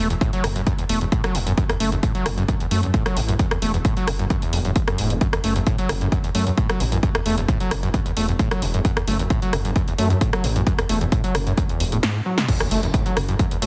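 A dry, heavily compressed sound with a radio-like squeeze frames this short cut from a longer piece of driving peak-time techno, hypnotic and relentless at 132 BPM in a straight 4/4, sitting on F# minor throughout. An up-front overdriven acid bass carries the riff, squelchy and gritty with a resonant filter pluck, roughened by distortion and given subtle chorus, tape echo and sidechain pumping. Beneath it, a detuned saw bass adds a thick, beating, menacing low end that also pumps against the sidechain. The heavy, overdriven electronic kick drum sits up front, joined by a layered techno drum kit of crash cymbal, hi-hat, rim click and a punchy snare, both carrying overdrive and studio reverb. A drum fill at 12.0 seconds leads into a drop at 12.5 seconds, where a very quiet electronic impact marks the new section.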